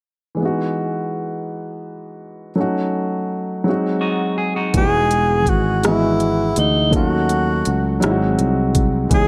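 Slow R&B in six-eight, this sensual, tender passage is cut from a longer piece and opens with an intimate grand piano alone, its audible action noise up front as it moves through Emaj7, D#m7b5 and G#7. A dark, picked clean electric guitar adds a brief second line at 4.0 s. At 4.7 s a produced electronic drum kit arrives with a knocking kick, smooth hi-hats and rim clicks, and the progression begins again. Moments later a fretless electric bass joins with a direct, up-front tone, as does a breathy tenor saxophone playing a jazz-style solo melody with soft attacks, scooped notes, vibrato and tape echo. The dark production sits in light reverb.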